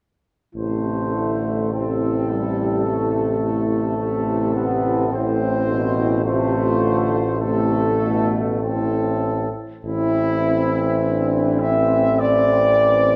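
Moving in a slow, rubato 4/4 at roughly 48-55 BPM, this solemn, melancholic hymn-like classical passage for brass band sits in A minor and is cut from a longer piece. A close-miked trumpet section carries the clear melody up front with light vibrato, while a mellow French horn section sings a second line in the background. A brilliant, vintage-toned solo trombone and a bright, punchy, distant trombone section fill in the accompaniment above a roomy tuba bass holding a low A, all entering between 0.5 and 0.6 s and blooming in a wet recital-hall reverb until the close at 13.2 s.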